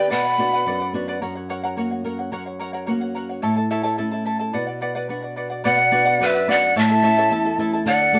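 A breathy, up-front cane quena with vibrato and a chiffy attack carries the melody in this festive yet melancholic Andean folk piece in B minor at 108 BPM in 2/4, opening briefly and returning at 5.7 s alongside bright large pan pipes with lifted highs on a second line, while a shimmering, fingerpicked charango with double strings and a fingerpicked flamenco guitar with fresh strings and audible finger squeak accompany throughout, a nylon-string guitar fill arrives at 1.8 s, and a small room lends moderate ambience.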